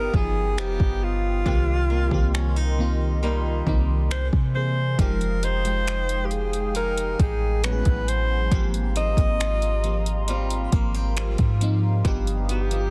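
A dry, dense and heavily limited mix opens this moody, longing stretch of contemporary R&B at 68 BPM in F minor, cut from a longer piece, where a breathy, up-front alto saxophone sings the melody with vibrato and subtone through tape echo. Around it, a lush FM electric piano with a soft pad layer shimmers with chorus and phaser, a hollow, flute-like pad sits dark in the background with sidechain pumping, and a bright, boxy acoustic guitar picks swing-style arpeggios through tape echo. Underneath, a deep, boomy 808-style bass plays from the start, joined at 0.1 seconds by a smooth electronic drum kit of finger snaps, hi-hat and soft kick, with an overdriven, clipped snare, and together they anchor chords moving from Gaug7 through Fm9 and Abmaj13 to G7alt.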